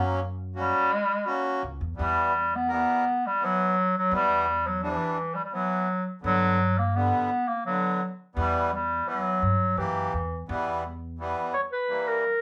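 Accordion and pizzicato upright bass open this bittersweet, festive klezmer excerpt together at 85 BPM in a straight 3/4, with a warm, vintage clarinet entering at 0.6 seconds to carry the melody in E dorian sharp 4. The accordion's reedy, clear single-reed voice with dry tuning supplies the accompaniment up front, while the woody, steel-strung upright bass holds the low end. The clarinet, played in a classical style, sits clearly above both parts as the lead voice. The harmony moves from F# to Em, then to G at 6.2 seconds and back to Em. At 10.5 seconds the clarinet takes a solo into a new section; the bass stops at 11.3 seconds and the accordion at 12.2 seconds. The trio sounds like a band playing live in one room, wrapped in a wet studio ambience with a short reverb.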